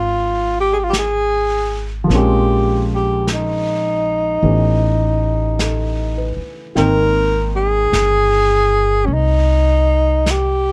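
Romantic and tender, this slow jazz ballad excerpt in Ab major drifts at 52 BPM with a swung 4/4 feel, as a breathy, whispered alto saxophone with light vibrato and soft subtone carries the melody up front over a polished upright piano, a woody pizzicato upright bass, and a muffled, lo-fi vintage brush kit that enters at 0.9 seconds, all captured close and dry as the chords move from Dbadd9 through Bbm9 and A9 to Abmaj9.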